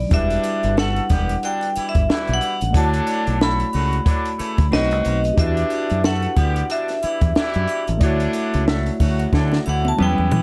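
Cinematic and smooth, this short cut from a longer piece of lush 1970s-style soul in E dorian moves at 91 BPM with a swung 16th feel, as a ringing vibraphone with hard mallets and slow motor vibrato carries the melody over mellow tine electric piano, a round, punchy fingered bass up front, tight octave-doubled horn stabs, a dry cocktail drum kit with a high-tuned snare, and a distant shimmering triangle, while a slightly broken-up electric guitar through a small old amp slips in a spring-reverbed riff at 9.2 seconds just as a drum fill begins at 9.3 seconds over chords moving from Em9 to Dmaj9 and B7b9.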